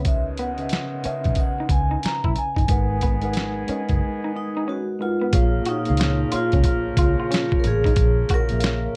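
This sultry neo-soul excerpt opens at once with a gritty, pitched-down boom bap drum kit up front, its thumpy kick and medium-tuned snare joined by hi-hat, over a round, punchy foam-muted electric bass. A mellow tine electric piano heard through its built-in speakers supplies clean accompaniment, while an electric guitar through a small old amp adds a slightly broken-up, lo-fi second line. From 0.1 seconds a vibraphone played with soft mallets carries the melody with a ringing, metallic tone and medium motor vibrato, and a tight vintage horn section in jazz style adds stabs with light vibrato. The 16th notes swing in 4/4, and the harmony moves from C#m9 to G#m9 before a break at 4.0 seconds leads into a second section on A#m7 at 5.3 seconds. Light reverb and a dark, warm production give the soulful cut a close, dusky feel.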